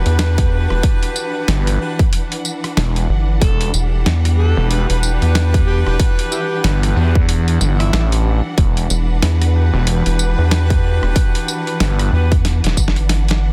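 Dry and dense, this heavily limited modern mix carries a gritty, funky glitch hop groove with a swung feel in 4/4. A punchy, layered electronic kick sits up front beside a pitched-down, sampler-style boom bap kit of hi-hat, rim click, medium-tuned snare and tambourine, and the cut closes with a drum fill from 12.4 seconds. Two basses share the low end: a rubbery, hollow square bass with a moving notch and a dark tone, joined at 1.5 seconds by an aggressive, saturated sawtooth bass built on oscillator sync and a plucked filter. Over a sustained Em9, a lush, bowed symphonic string section and a tight pop-style horn section playing stabs both pump with sidechain, the horns trailing tape echo. In the background, an amplified, overdriven harmonica takes a short jazz-flavoured solo from 3.4 seconds, its vibrato, scooped notes and tongue slaps roughened by vintage 12-bit sampler grit.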